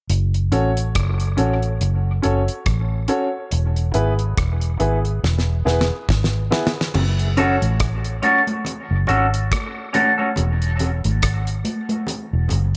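A slow 70 BPM dub reggae groove in 4/4 with a swung sixteenth-note feel anchors this hypnotic, heavy excerpt in F# minor, built on a dark, round, foam-muted electric bass sitting up front and a damped 70s drum kit with a fat snare, tight kick, rim clicks and dark cymbals, cycling between F#m and E. Warm grand piano stabs soaked in dub echo join at 0.5 seconds, a drum fill arrives at 5.2 seconds, and at 6.9 seconds ringing, high-tuned congas enter, followed by a bright, twangy clean electric guitar with its own dub echo. From 10.4 seconds a break leaves the bass, drums and congas to carry the groove in a small, lightly reverberant room.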